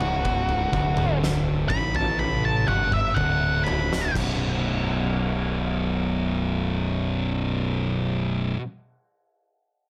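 Brooding and sludgy, this fragment of stoner and doom metal slows as an up-front octave-fuzz lead guitar solos over a pair of dark, distorted thick fuzz guitar riffs, a growly overdriven fingered bass and an oversized low-tuned drum kit with a boomy kick, fat snare and a fill, before the lead falls away at 4.1 s and the drums at 4.4 s, leaving the guitars and bass grinding on in light reverb as the harmony moves from B minor to a bare power chord.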